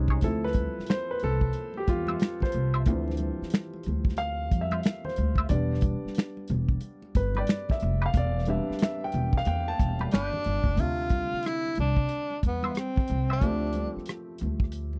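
A dry, close-sounding neo-soul R&B groove at 91 BPM in D dorian opens with an intimate baby grand piano, its action noise audible, taking a solo turn over Dm9 and Em7 alongside woody pizzicato upright bass, a dark soul drum kit with a tight kick, finger snaps and rim clicks, faint bright congas, and a clean, picked semi-hollow guitar with wah and lush chorus, before a breathy, whispered tenor saxophone with scooped notes and slapback echo enters at 10.1 seconds in this smooth, introspective excerpt from a longer piece.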